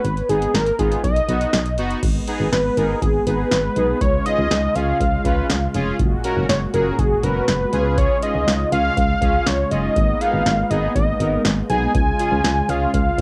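Synth-pop with a wistful, nostalgic air, this short excerpt from a longer piece opens with a thick, dark unison lead carrying the melody up front on cassette tape, over a punchy, round FM bass and an electro analog drum machine with deep kick, punchy snare and metallic hats. Fat, detuned analog synth brass with chorus and vibrato joins at 0.3 seconds, and a soft-attack brassy pad settles in the background from 2.0 seconds, both tinted by cassette tape. The home recording carries light digital ambience and a faint mains hum, with chords moving from Abm and Cb to Db, Gbadd9 and Abmadd9.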